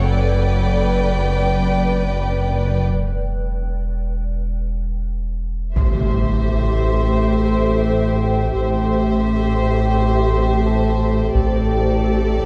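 A dark, warm production set in a moderate scoring-stage reverb opens this uneasy, mysterious passage of suspense film score, cut from a longer piece. From the start, a rich studio violin section carries the melody with smooth vibrato while a clear, distant symphonic violin section traces a second line, both bowed over a cloudy, evolving granular pad whose blurred, detuned chords carry their own reverb. Underneath, bowed cello and double bass sections hold the bass, joined by an up-front, round dub sub bass drone, while a very quiet concert harp adds mellow, ringing thumb-plucked texture. After a break from 2.9 s, the music shifts at 5.8 s onto an Am7 chord, where a dark, woody viola section enters with soft-attack accompaniment, an electronic impact sounds in the background and close, heavy-stick taiko drums strike very quietly. The taiko returns at 11.3 s as the harmony moves to Gsus2/A, keeping the tension unresolved.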